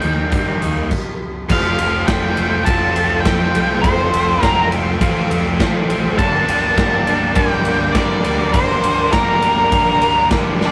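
A dark, fuzz-drenched octave lead guitar sits up front, carrying a dreamy, wistful melody through this short cut from a longer shoegaze and dream pop rock piece in F mixolydian, moving at 102 BPM in a straight 4/4. Beneath it, a biting overdriven guitar and a quieter double-tracked, compressed overdriven guitar play a riff, joined at first by a very quiet, hollow-toned semi-hollow guitar that drops out at 0.9 s as the band hits a brief stop. A lo-fi, slightly broken-up guitar through a small old amp picks out soft fingered arpeggios, while a vintage sawtooth string machine with violas holds slow-blooming sustained chords in the background, shimmering with ensemble chorus. A growling, overdriven fingered bass adds punch from further back, and a huge arena drum kit with bright cymbals, a punchy kick and a medium-tuned snare pumps in a hall-like room. The harmony moves from Eb to Fadd9 at 1.5 s and on to Gm, and the whole mix carries the rough, tube-saturated grit of a rehearsal-room recording with moderate reverb.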